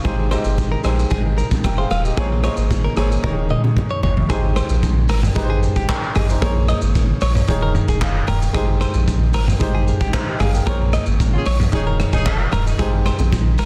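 Afrobeats at 113 BPM in a straight 4/4, this mellow, smooth passage is cut from a longer piece and circles through Abmaj7, Bbm9 and Eb7sus4 chords. A deep, round sine sub bass and a gritty, saturated acoustic drum kit with a punchy kick sit up front. The kit carries handclaps, hi-hat, rim click, shaker and toms, with soft clipping on the snare and a drum fill closing the opening section at 3.2 seconds. A warm baby grand piano with short sustain plays open accompaniment chords and steps forward for a fill. A bright, twangy clean electric guitar, recorded direct and compressed, picks a riff through spring reverb and digital delay. Very quiet congas and bongos ring softly at the start and again near the end, and a distant, roomy horn section adds a brief second line with digital delay at 11.3 seconds during a band accent, all in a small room ambience with a dense, heavily limited modern master.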